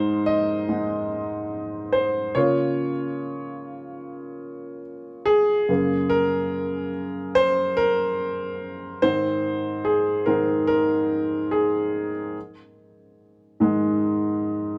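A woody, up-front upright piano plays alone through this heartfelt, tender pop excerpt, moving from Abadd9 and Db6 into a new passage at 5.7 seconds that settles on Gb before returning to Abadd9 and closing on Ab5, all framed by the moderate reverb of a large studio room.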